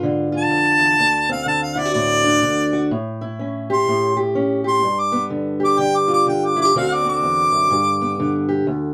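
A swung 4/4 groove at 125 BPM carries this laid-back, gritty acoustic country blues excerpt, where a dark, boxy fingerpicked parlour steel-string guitar plays accompaniment through D7, A7 and G7 changes while a mellow harmonica with light vibrato takes a jazz-style solo from 0.4 seconds, captured by close, detailed microphones with little reverb.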